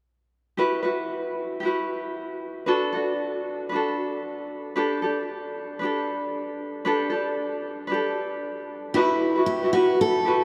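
A loose 4/4 pulse at 115 BPM with swung sixteenths gives this carefree pop excerpt an easy-going lilt, set in a vast, echoing space. A bright, light, fingerpicked tenor ukulele sits up front playing the accompaniment alone from 0.6 seconds, moving through Emadd9, D6 and Gadd9/D chords. At 8.9 seconds a warm picked steel-string acoustic guitar enters up front with the melody, returning to Emadd9 as the fragment closes.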